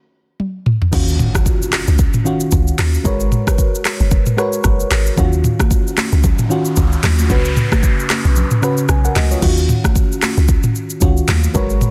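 After a brief silence, a drum fill opens this hypnotic, mellow afrobeats excerpt at 0.4 seconds, in Eb minor at 113 BPM with a swung 16th-note feel. At 0.9 seconds an electronic impact lands as the rest of the groove enters. The up-front, tape-warm drum kit has a deep kick, metallic hi-hats, handclaps, rim clicks, shaker, toms and crash cymbal. A round, percussive log drum bass sits beneath it, dark and quickly decaying, while a soft FM electric piano with chorus plays chords moving from Ebm9 through Abm11, back to Ebm9 and on to Db7sus4. Ringing, high-tuned congas struck with hard hands join in the background at 5.2 seconds, and a noise sweep follows from 5.8 seconds, with the kick dropping out briefly during its final second ahead of the return to Ebm9. The sound is dry and dense, with a heavily limited modern master.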